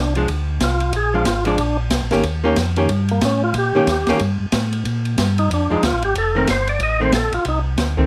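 A percussive tonewheel organ carries the melody in this bluesy, swinging soul jazz organ trio excerpt, its full, clean tone marked by second harmonic percussion, key click and a slow rotary speaker, sitting up front between Bb3 and Eb5. A second, mellow tonewheel organ handles the bass from F1 to Bb2, round and dark with vibrato, key click and its own slow rotary speaker. An archtop guitar, miked and amplified, enters at 0.2 s with picked, hollow-body electric accompaniment that is also placed close to the listener. The open jazz drum kit comes in at the same moment, giving a small-room acoustic sound with shadowy cymbals on ride and hi-hat, a high-tuned snare and a boomy kick. The group swings at 184 BPM in 4/4 in Bb major over Bb7, Eb7 and F7 changes, with moderate studio ambience around the players.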